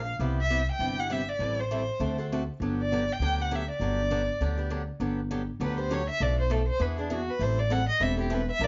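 A rich, bowed violin with expressive vibrato and portamento carries the melody and takes a solo from 5.0 s in this lively, playful jazz manouche swing at 200 BPM in G major, backed by a dark, thumpy pizzicato upright bass on gut strings and a boxy, picked acoustic guitar with old strings accompanying over chords such as Cmaj7, Am7 and D7 from 0.2 s, heard in light reverb with a mellow, rolled-off top end.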